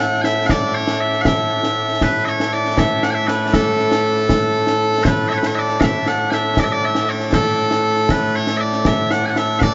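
Stirring and proud, this short fragment of Scottish traditional pipe music moves in a straight 6/8. Loud, piercing bagpipes carry the melody as a continuous solo voice placed up front, reaching from A2 up to G#5. Concert snare drum and concert bass drum join at 0.2 s, their acoustic sound coloured by dark cymbals and a small-room character. The same strain is played twice, with the repeat beginning at 5.1 s. A huge, wet reverb with a long tail sets the performance far back in a vast space, and the highest frequencies are softened, giving the recording a distant, hazy sheen.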